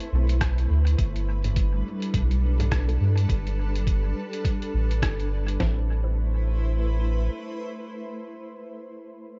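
Hazy and meditative, this ambient dub fragment, cut from a longer piece, moves at 104 BPM in 4/4 with a swung sixteenth-note feel, centred in A minor and drifting between Am and G. A cloudy, evolving granular pad holds sustained chords from the start, its slow attack and long release blurred by built-in reverb. Beneath it, a round, up-front sub bass sits deep and soft, carrying the low end for most of the fragment. A lo-fi sampler-style kit, pitched down, muffled and re-recorded in a small room, sets a thumpy kick and medium-tuned snare against congas, hi-hat and rim click that are dressed in dub echo, and the drums fall away at 5.8 seconds. From 2.6 seconds a muted, detuned sawtooth chord stab with a filter pluck and chorus sits in the background, its echoes trailing behind, while the whole recording keeps a digital ambience with its highs rolled off above 7.8 kHz.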